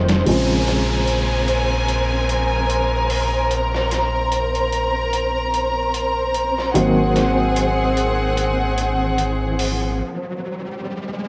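Rich, bowed strings sit up front in this dark, smoky trip hop excerpt at 74 BPM in Bb minor, holding smooth sustained chords over Bbm7 and Ab7 while a woody, slightly detuned upright piano with tremolo, 12-bit sampler grit and tape echo accompanies. A round, amped fingered bass and a compressed, pitched-down sampler kit of hi-hat and snare add a tape-softened swing, a flickering granular texture hovers high, and vinyl crackle hisses beneath. An electronic downlifter and riser sweep through, the riser building from 8.9 s into a break at 10.0 s, where only the piano and effects carry on to 11.3 s.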